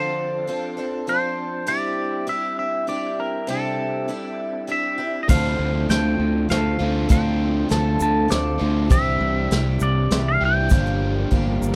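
Dusty and wistful, this folk rock and heartland rock excerpt at 100 BPM in 3/4 opens with a twangy electric guitar melody run through a phaser over shimmering twelve-string acoustic picking and a reedy tonewheel organ with slow rotary speaker, overdrive and chorus vibrato, before soft brush drums, a growly fingered bass, a crunchy double-tracked overdriven guitar riff, a grainy egg shaker and a barky, very quiet reed electric piano join at 5.3 seconds, with drum and electric piano fills arriving at 11.3 seconds, all with very little reverb.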